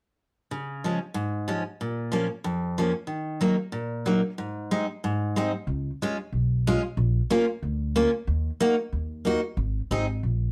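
A full-bodied, up-front picked steel-string acoustic guitar with audible finger squeak carries this festive, jolly alpine folk excerpt in a straight 2/4, cycling through Db, Bbm, Ebm and Ab, until a woody pizzicato upright bass joins at 5.7 seconds, all set in light reverb.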